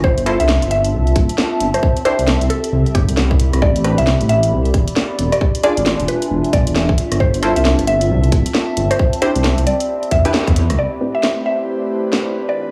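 A dreamy mix soaked in plate reverb with a small-room ambience opens this bouncy, soulful two-step UK garage cut, taken from a longer piece and swung on the sixteenths. Up front, a tight, layered electronic kick sits beside a deep, rumbling, dark detuned saw bass that beats, while a garage kit adds a cracking snare, rim clicks and warm hats. A woody, round mallet-like synth pluck carries the melody through chorus, cassette-tape colouring and analog delay. Punchy detuned chord stabs and a warbling, nostalgic lo-fi pad with phaser and sidechain pumping fill out a soulful progression that moves from G13sus4 through Cmaj7, Am11 and E7b9. After a band accent at 10.3 seconds, the kick and bass drop away, a filter sweep runs on the stabs from 10.8 seconds, and an airy, breathy pad enters at 11.1 seconds to carry the final Am11.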